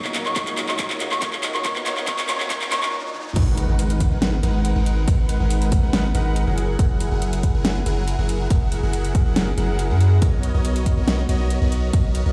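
The recording has a large, roomy sound, with a digital ambience and a big studio reverb, like music played through a big sound system in a bare room. It is a bittersweet, lush future bass piece at 140 BPM in G# minor, moving in a half-time feel. The opening build-up lays a bell-like tine electric piano, very quiet symphonic strings with light vibrato, and a soft, pure FM synth bell melody with chorus, phaser, 12-bit sampler grit and delay over a drum fill, while a background riser climbs and a filter sweeps the polysynth. The strings and bell fall away at 2.9 seconds for a brief stop, with the electric piano lingering until 3.4 seconds, when the drop hits with an impact, the chords moving from G#m9 through F#9 to Bmaj9. Throughout, a fat, detuned sawtooth polysynth riff with ring modulation and a moving notch pumps and echoes, over a deep, sine-like 808 bass that sits up front. The punchy, overdriven electronic kick and the pop kit, with its fat snare, metallic hats, handclaps, toms and crash, drive the track with a layered, produced punch.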